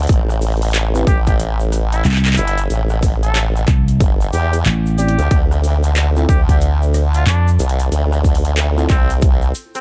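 A swung 92 BPM groove in 4/4 drives this funky, playful glitch hop clip in D minor, built on a punchy, overdriven electronic kick, an overdriven dubstep kit of handclaps, metallic hi-hats and rim clicks, and a grainy egg shaker in the background. Up front sit a chorused, tube-saturated formant-sweep wobble bass and, from 2.0 seconds, an amped vintage slap bass, while a warm trumpet plays a solo melody with delay from 1.1 seconds over Am7 moving to D7(no3). A mellow tine electric piano adds very quiet stabs, returning at 5.0 seconds, inside a dark, dry production.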